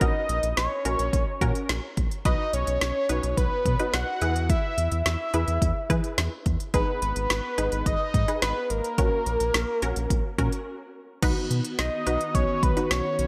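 Synth-pop at 107 BPM in 4/4 with a straight feel, this short excerpt carries a wistful yet upbeat mood over a chord cycle moving from F#/A# through B, E and G#m before returning to F#/A# and landing on B. A fat, detuned sawtooth lead with a sub octave and vibrato sings the melody up front, its mellow tone colored by phaser and digital delay. Beneath it, a lush unison pluck with a short decay and subtle chorus fills in the accompaniment, while a round, dark analog bass sits prominently alongside a deep house drum kit of deep kick, woody snare, smooth hi-hats and crash cymbal. After a brief break at 10.7 seconds, a vintage string machine of violas enters at 11.2 seconds with soft-attack sustained chords thickened by ensemble chorus. A moderate plate reverb and bright 1980s-style digital production tie the sound together.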